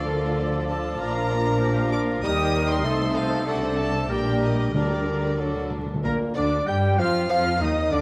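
A rich chamber violin section carries the melody through this stormy, restless excerpt from a quick classical-period orchestral movement in G minor, taken at 96 BPM in 2/4 with a rubato feel. A second violin line, a clear, distant oboe and a hollow small flute group weave supporting lines. Beneath them sit a close-miked bassoon and a studio viola section in the accompaniment, mellow French horns holding sustained chords, soft-attack trumpet stabs, and a lush cello section alongside a focused double bass section on the bass. Dry timpani strike at the opening and return at 4.7 seconds, closing with a fill from 5.4 to 6.0 seconds, where a brief second section begins. The whole scene sits in a moderate scoring-stage reverb under a vinyl crackle.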